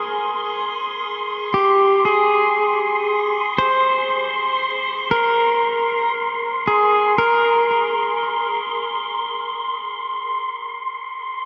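Drenched in a huge, dark reverb, this weightless, peaceful ambient fragment sets an up-front, clean electric pedal steel guitar carrying a slide melody with volume swells and delay until 7.9 seconds, over an airy, breathy wind-like tuned noise layer that sustains on its own through 11.5 seconds.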